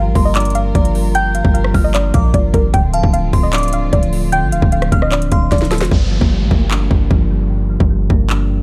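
A dry, gritty hardware recording in a digital ambience frames this melancholic, eerie trap excerpt, moving in a half-time feel over Gm7 and Dm7 chords. A soft, round pluck carries the melody, its detuned, wave-folded tone darkened by a low-pass filter and colored with chorus and analog delay. Above it, a delicate synth tine bell adds a tinkling, warbling second line with a vintage FM character, treated with chorus, phaser and analog delay. Mellow electric-piano-like synth keys supply the accompaniment, filtered and chorused. Underneath, a dark studio string section holds sustained chords, bowed sul tasto with light vibrato and an intimate, close sound. A deep, boomy 808-style bass and a trap kit with a hard-clipped kick, sharp snare, metallic hats, handclaps and rim clicks sit up front. After a drum fill at 5.5 seconds, the pluck, bell and strings stop at 5.9 seconds, the hi-hats fall silent, and an electronic downlifter enters beneath the keys, bass and remaining drums.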